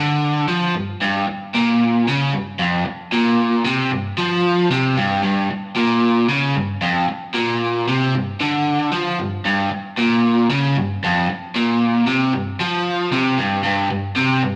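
A bright, overdriven electric guitar plays alone from 0.0 to 14.6 s, picked and double-tracked, sitting up front between F2 and F3 in this raunchy, gritty rock excerpt. It moves at 114 BPM in a straight 4/4 feel, tuned to A4 = 441 Hz. A wet stone-room reverb and a rough rehearsal-room sound give the cut from a longer piece a raw, live edge.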